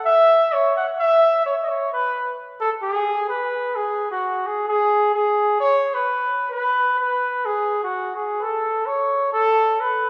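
A lone flugelhorn enters at 0.1 seconds, opening this jolly, festive alpine folk passage taken from a longer piece. Played in a classical style, its warm tone sits up front yet carries a distant, roomy character, ranging from F#4 up to F#5. The metre is a straight two-beat pulse, and the music moves into a second section at 3.8 seconds before the horn stops at 10.1 seconds. A lush recital-hall reverb, with a long 1.8-second decay, surrounds the instrument and suggests a church or concert hall. The result is a warm, celebratory solo.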